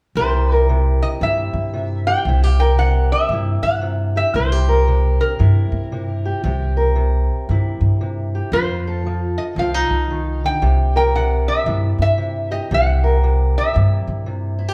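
Swaggering and gritty, this blues excerpt swings at 115 BPM in C mixolydian, with a metal-body resonator slide guitar carrying the melody up front in a metallic, nasal voice picked with fingerpicks. Beneath it, a parlour steel-string acoustic guitar fingerpicks a boxy, dark accompaniment, while a pizzicato upright bass on steel strings sits forward with a woody growl. The trio plays live together in one large studio room with moderate reverb, moving from C7 to F7 at 8.5 seconds and back to C7 at 10.6 seconds.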